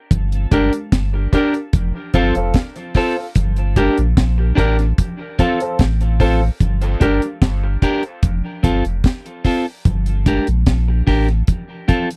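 Meditative and deep, this dub reggae excerpt moves at 74 BPM in a straight 4/4 in G minor, with the harmony rocking between Gm and F. A round, sine-like sub bass with a fast attack sits up front, holding sustained notes between F1 and Bb1, while a dry acoustic drum kit with a tight kick, high-tuned snare and hi-hat carries the groove. Congas with a thick skin sit in the background, their live-room sound trailed by dub echo. From 0.5 s a clean, picked electric guitar plays accompaniment up front, also treated with dub echo, and warm grand piano stabs with echo join it until they drop out at 7.2 s. The sound is that of a close, 1970s-style studio recording with little reverb.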